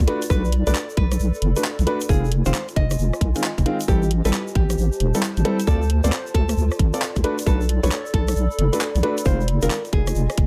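Set in a small-room ambience, this soulful, bouncy slice of two-step UK garage at 134 BPM swings its sixteenths over a deep, dark wobble bass with chorus and sidechain pumping, an overdriven, tight electronic kick up front, and an overdriven garage kit of handclaps, hi-hat and rim click. A boxy grand piano with audible action noise plays stabs with digital delay from 0.1 to 9.7 seconds, while a fingerpicked nylon-string guitar carries a small, finger-squeaking melody through its own delay. A warbling, nostalgic lo-fi pad with chorus, reverb and pumping hangs alongside a grainy, bright tube shaker as the chords move from Bm7 through Fm7, Am7 and Dm7.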